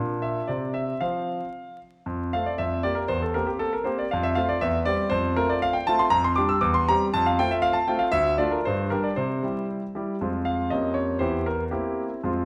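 A clear concert grand piano plays solo throughout this classical-period sonatina excerpt, its intimate, up-front tone carrying deep bass, long sustain and audible action noise across a range from D2 to E6. The mood is elegant and playful, moving at 118 BPM in a straight 2/4 in F major, tuned to A4 = 441 Hz, with the harmony turning to F minor at 10.2 s. A wet recital hall reverb surrounds the polished playing, while a layer of vinyl crackle adds an aged patina to the sound.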